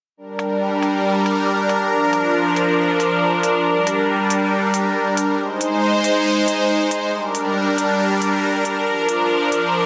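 A bright, detuned supersaw pad sits up front through this heavy wobble dubstep excerpt, holding slow-attack sawtooth chords through a phaser as they move from Gm to Bb, back to Gm, then to Ab. Crisp, overdriven electronic hi-hats, layered and low-pass filtered, sit lower in the mix beneath the pad from 0.4 s to 9.6 s, carrying a half-time feel that gives the menacing, chaotic mood its weight. A lush hall reverb surrounds the parts, and the dense, heavily limited modern master keeps the sound thick and pressing.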